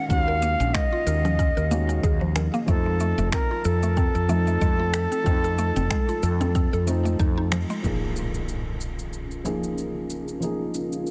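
An airy, chiffy cedar flute opens this mystical, earthy downtempo piece at 93 BPM with a light 16th-note swing, over a thick-felted upright piano and a woody FM synth pluck playing chorused, phased arpeggios, all three touched with digital delay. A round, up-front fretless bass and a deep, tape-warm kick anchor the groove, while overdriven electronic cabasa, finger snaps and congas add grit, and the bass and piano pump to the sidechain. The flute and kick fall away just before a band accent, and an electronic impact lands at 7.8 s as the harmony moves to Bbm7, with a blurred granular pad drifting in at 9.2 s before this excerpt cuts off.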